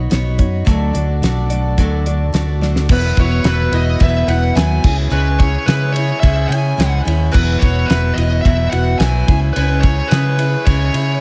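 A straight 4/4 groove at 108 BPM, set by a damped 70s drum kit with a fat snare and dark cymbals and a round, up-front fingered electric bass, drives this open-road folk rock and heartland rock passage in E major. A woody, boxy picked acoustic guitar on an old ladder-braced body plays accompaniment, while a twangy electric guitar riff through a small old amp and a reedy hand-pumped harmonium holding sustained chords sit in the background, with slapback echo on both guitars and a drum fill at 2.6 seconds. At 2.9 seconds a smooth overdriven lead guitar enters with a bright melody, also treated with slapback echo, as the chords move between Esus2 and C#m in a small room with light reverb.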